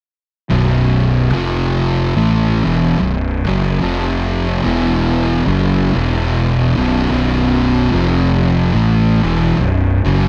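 A dark, distorted fuzz guitar sits up front, picking a slow, heavy riff in the low register from 0.5 to 10.3 seconds. A second thick fuzz guitar plays its own picked riff further back in the mix, its distorted tone warmer. Beneath them, a fingered electric bass with overdriven fuzz is round, punchy and close, anchoring the low end. This ominous, hypnotic slice of metal, cut from a longer piece, moves at 73 BPM in 4/4 with a swung eighth-note feel, tuned slightly sharp to A4 = 444 Hz. Power chords cycle between B5 and F5, briefly touching E5 and F#5. The dry, close sound recalls a 1970s studio, with little reverb.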